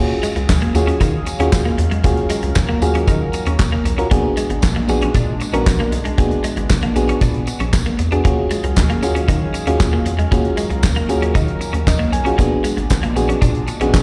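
A live-gig sound, heard through the venue's PA with recital hall reverb and a small room ambience, frames this danceable, funky stretch of early-eighties boogie funk, cut from a longer piece and built on Ebm11 and Bb7b9b13. A dry, up-front 70s drum kit with a fat snare, tight kick, hi-hat and handclaps plays alongside a rubbery, bouncy square-wave bass with a dark filter pluck, while a warbling, vintage FM electric piano sits up front, its accompaniment broken by a fill at 11.6 seconds. A slightly broken-up picked guitar riff with analog chorus and slapback echo, a shimmering pulse-width pad holding sustained chords, and a jingly tambourine tucked in the background fill out the groove.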